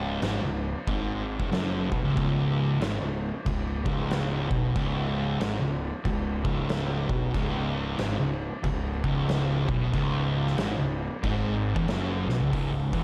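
Stoner and doom metal at 93 BPM in C# minor, this hypnotic, sludgy cut from a longer piece rides a swung 4/4 feel, with one warm, thick fuzz guitar up front on the low riff while a second fuzz guitar sits in the background. A round, overdriven electric bass plays alongside from the start, and an oversized low-tuned acoustic kit enters at 0.2 seconds with a fat snare, punchy kick, dark cymbals and gritty saturation in a bright stone room. A drum fill at 12.2 seconds carries the riff from its C#5 power chord to a C# minor chord at 12.5 seconds.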